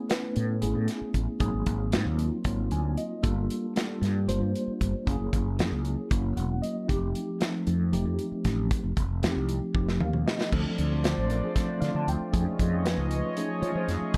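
A clean, close-up studio sound with light reverb frames this funky, slick electric jazz fusion excerpt in a lopsided 7/8. A mellow tine electric piano, heard through its built-in speakers with phaser and plate reverb, carries the chords from the start, moving down through rich ninth chords from Amaj9 to F9 and adding short fills at 2.5, 6.1, 9.7 and 13.4 seconds. A modern studio drum kit sits up front with a dark, rolled-off top, a tight kick and a medium-tuned snare, and it plays a fill at 9.7 seconds alongside the piano. A round, punchy fretless electric bass enters at 0.4 seconds and sits up front in the mix, thickened by lush chorus. At 10.5 seconds the harmony turns to Dm7 and then F7alt as a shimmering, retro pulse-width pad fades in with a slow attack and long release, adding a soft sustained layer under the band.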